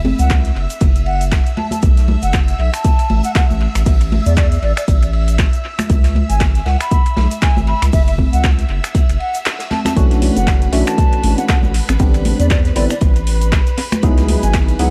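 Deep and warm, this deep house passage, cut from a longer piece, rides a swung groove under a haze of vinyl crackle and echo-heavy small-room ambience. An up-front electronic kick anchors a round, dark analog bass that pumps beneath a shimmering vintage string machine of violins, while a close-miked silver concert flute carries the melody with a pure, hollow tone, vibrato and tape echo. The rhythm bed layers a tape-treated deep house kit of finger snaps, handclaps and metallic hats with ringing, close congas and a grainy egg shaker. Further back sits an airy unplugged kit of ride, hi-hat and snare played with bundle sticks. After a brief break from 9.5 to 10.0 seconds, a percussive organ stab enters, its mellow, decaying chorused hits soaked in tape echo. The harmony moves through chords such as B7sus4, C#m7 and Bm11, sustaining the deep, warm mood.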